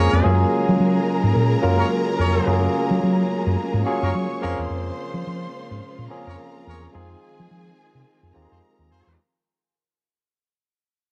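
Disco at 107 BPM with a sultry, glamorous swing, this fading excerpt sets a round, amped hollow-body electric bass up front beneath a barky, lightly overdriven tine electric piano, while distant horn stabs, a dark, woody bowed string section holding lush chords and a warm second string line with portamento and vibrato drift over Gbmaj9, Bbm7 and Fm7 in a dry, close 1970s-style studio sound.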